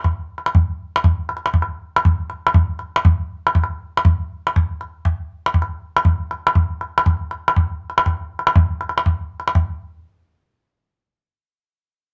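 A small acoustic calabash carries this joyful fragment of west African traditional music, sitting close, dry and up front at 120 beats per minute in a straight 12/8 feel. The calabash plays from the start until 9.7 s, set in a club-like room with a wet reverb. A new section begins at 9.6 s, just before the calabash stops, and the clip is cut from a longer piece.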